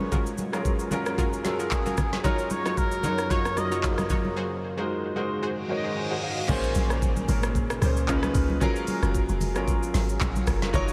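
A polished grand piano, a moody background pad and soft-handed congas open this soulful, late-night amapiano excerpt at 113 BPM, joined by a knocking, woody electronic R&B drum kit up front and a bright, detuned analog pluck with chorus and delay, while a veiled cup-muted trumpet sings a brief jazz-style solo at 1.7 seconds, a reverse cymbal rises at 5.6 seconds during a break, and at 6.5 seconds a deep, round log drum bass lands for the drop, all in a dreamy mix soaked in huge ambient reverb over chords moving from Gbmaj9 through Ebm9/Gb, Ab7, Bbm9 and Db7.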